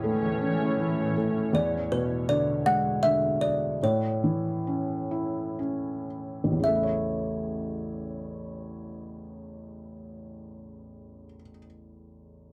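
Dark, warm production sets a gentle, innocent children's lullaby in a small room with a moderate reverb, cut from a longer piece. The music sways in 3/4 at 53-82 BPM with a rubato feel in A major, tuned to A4 = 439 Hz, and it slows down between 1.5 and 6.6 seconds. A plucked, woody kalimba sits up front carrying the melody until 11.5 seconds, its short, airy thumb-picked notes staying between B4 and F#5. Beside it, a felt-muted upright piano provides soft, mellow accompaniment from A1 to C#5, thick felt giving it a warm, hushed tone that lasts to the end. At the opening, a shimmering, ethereal ambient pad holds sustained chords with an octave-up sparkle, chorus and reverb, dropping out at 1.5 seconds. The harmony moves gently from A to E7 and settles back on A.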